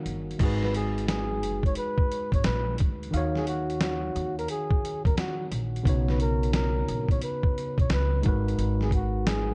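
The recording has a dark, warm production with light reverb, taken from a longer lo-fi hip hop piece with a nostalgic, melancholic mood. A worn, slightly out-of-tune tine electric piano, clean and played through a combo amp, begins the accompaniment at 0.0 seconds, and the upright bass and sampler-style drum kit join almost at once. The drums sit up front with vintage 12-bit sampler grit. They sound compressed, pitched down and muffled, with a thumpy kick, a medium-tuned snare, hi-hat and crash cymbal re-recorded in a large room over a swung sixteenth-note feel. The pizzicato upright bass is woody and acoustic, its steel strings holding down the low register. From 0.6 seconds a breathy flugelhorn carries the solo melody, whispered and intimate, with a soft attack, smooth top, jazz-style vibrato and a trail of analog delay, while the chords move from G#m7 through D#m9 and Bmaj9 to G#m9.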